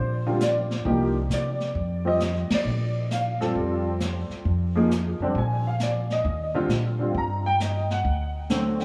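Swinging and late-night, this short jazz piano trio excerpt moves at 134 BPM in 4/4 with a swung eighth-note feel, as a clear, polished baby grand carries the melody from D3 to Bb5 through ensemble chorus and tape echo, an up-front, woody pizzicato upright bass holds the low end, and a distant, roomy brushed drum kit with dark cymbals enters at 0.4 seconds, the band hitting an accent at 2.4 seconds over chords moving from Ebmaj7 through Cm7 and Bbmaj7 to D7, all set in a dreamy mix soaked in plate reverb.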